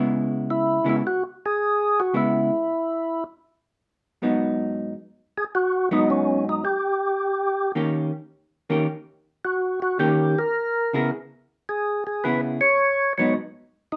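Smoky and soulful, this swung jazz excerpt moves at 107 BPM in 4/4, with a vintage hollow-body jazz guitar accompanying in a dark, picked tone from the start and dropping out at 13.3 seconds. A percussive tonewheel organ enters at 0.5 seconds to carry the melody up front, its full sound marked by key click, second-harmonic percussion and a slow rotary speaker, over chords moving from C#m7 through G#m7 and D#7 and back. Moderate studio reverb gives the pair a touch of room.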